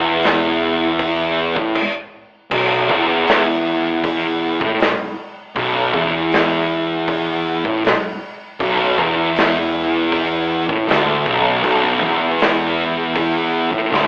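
Two thick fuzz guitars, one warm and one dark, open together on a low riff over a growly, punchy fingered bass tucked in the background, with a big acoustic rock kit of boomy kick, medium-tuned snare, hi-hat and bright crash entering at 0.2 seconds. After a brief stop, the band settles on B minor at 2.5 seconds for a hypnotic, brooding stoner and doom metal groove at 79 BPM in 4/4, closing on a drum fill at 13.9 seconds. It is all heard as a band playing live in one room through a telephone-like filter with a moderate large studio reverb.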